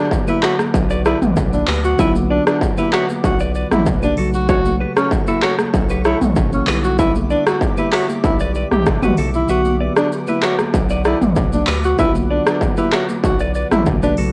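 Smooth and sultry, this afrobeats excerpt sets a breathy alto saxophone melody with vibrato over a distorted, up-front industrial drum kit of handclaps, hi-hat, kick, rim click, shaker and toms (its kick dropping out from 9.5 to 10.7 seconds), a thick saturated sub bass, a mellow tine electric piano, a dark, scooped clean electric guitar riff with analog delay, very quiet high-tuned congas and a faint glassy FM pad, all with a homespun cassette character.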